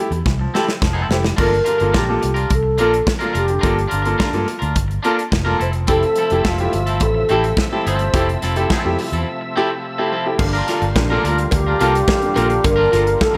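Sultry and danceable, this disco excerpt moves in a straight 4/4 groove, drifting between Fmaj7 and Gm7 chords. A clear grand piano, a bright, twangy electric guitar and a dark, round fingered bass sit under an up-front acoustic drum kit with a tight kick, a medium-tuned snare, hi-hat and crash cymbal, all treated with gated reverb. During a drum fill at the start, a mellow, airy alto flute takes up the melody from 1.1 seconds, its straight, tongued tone sounding distant and a little unsteady. A thick, gritty tonewheel organ joins at 5.9 seconds with sustained chords, key click and lush chorus vibrato. Following a break, a very quiet metallic cowbell enters at 10.4 seconds, all set in light reverb and a small room ambience.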